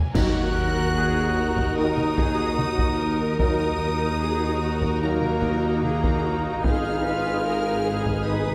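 A moderate concert hall reverb wraps this dark, relentless cinematic film score passage, a short cut from a longer piece moving at a straight 74 BPM in 4/4 in Eb minor. Close, dry taiko ensemble hits struck with hard sticks drive the music from the start, and a drum fill at 0.0 s leads into a full band accent, where clash cymbals and concert bass drum add bright crashes before they stop at 1.7 s. Underneath, a mellow solo tuba and a bowed double bass section with portamento hold a deep low line, while a close cello section, a distant viola section and a background second violin line fill out the strings with lush vibrato. A very quiet trombone section with a present, clear tone and a soft French horn section sustain chords, and a distant, roomy trumpet punctuates with stabs. Above it all, a smooth violin section carries the high melody over harmony that shifts from Ebm to Abm at 6.6 s.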